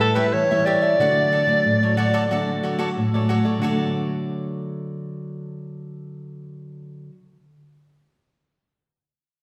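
A warm, vibrato-laden soprano saxophone carries a jazz-styled solo melody up front yet with a distant, roomy quality before stopping at 3.0 seconds, while a bright, crisply picked cavaquinho and a small, fingerpicked nylon-string guitar keep accompanying this joyful, sunny samba fragment, moving from A7 to Dmaj7 in the wet reverb of a concert hall.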